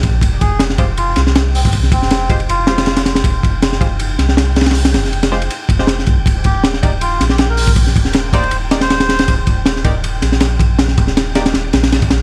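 A crunchy, saturated breakbeat kit with a punchy kick and high-tuned snare sits up front over a round, soft dub sub bass and a dark, wind-like noise texture in the background, all under vinyl crackle and small room ambience, as a reedy, breathy melodica with 12-bit sampler grit and dub echo plays phrases from 0.4 and 6.5 seconds amid muted, detuned chord stabs with chorus, giving this nostalgic, raw jungle cut a gritty, dubby haze.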